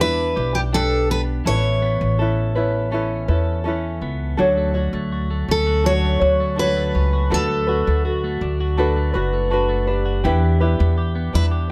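A straight 4/4 pulse at 82 BPM carries this carefree, heartfelt acoustic pop passage in D major, moving from Em7 and Aadd9 into Dmaj7 and Bm7/D before returning to Em7. A full-bodied picked steel-string acoustic guitar takes the melody up front beside a woody pizzicato upright bass, while a bright fingerpicked tenor ukulele accompanies and a clean, compressed twelve-string electric guitar plays arpeggios through spring reverb. From 8.1 to 11.1 seconds a mellow vibraphone with soft mallets adds a dry, ringing second line in the background, and the whole band sits in a lightly reverberant room.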